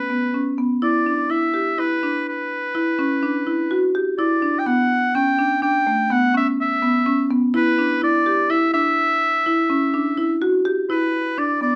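Hypnotic and pensive, this contemporary instrumental fragment moves at 125 BPM in a straight 7/4 and sits in E dorian, holding on Em7 before shifting to E7(no3) at 10.9 s. A clear, present oboe carries the solo melody in a classical style, while a woody, dark marimba played with medium hard mallets supplies smooth, percussive arpeggios beneath it, both placed up front. A wet studio reverb with a short 0.6-second decay gives the pair a sense of space in this cut from a longer piece.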